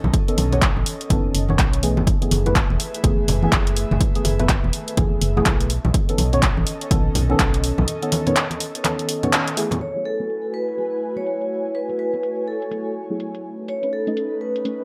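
Deep house at 124 BPM in F# dorian, smooth and moody with a swung 16th feel, built on an airy, breathy pad and dark, detuned chord stabs with 12-bit sampler grit and dub echo, both pumping under sidechain as the harmony moves between B9 and F#m11. A punchy, tape-warm electronic kick and a hollow, organ-like FM bass anchor the groove until 7.5 and 7.9 seconds, while an overdriven, up-front drum kit with handclaps and filtered hi-hat runs throughout and thin-skinned, low-tuned congas sit in the background. After a band accent at 9.3 seconds, filter sweeps run on the drums and stabs from 9.8 seconds as a metallic, ringing vibraphone with fast motor vibrato and digital delay steps forward, all set in a light digital ambience.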